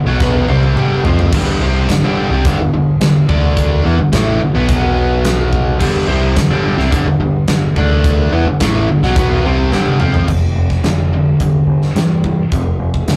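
A driving, sunny classic rock riff in G mixolydian at 107 BPM, cut from a longer piece, with a bright, biting overdriven electric guitar, picked and double-tracked up front, carrying the riff over a growling fingered bass that is overdriven and punchy. A huge acoustic arena kit joins at 0.2 s with a fill, its fat snare, punchy kick and bright cymbals pumping in a big room, and another fill at 9.7 s leads into a new section at 10.3 s that moves between F5 and G5 chords. The rough rehearsal-room recording carries warm saturation and moderate studio reverb.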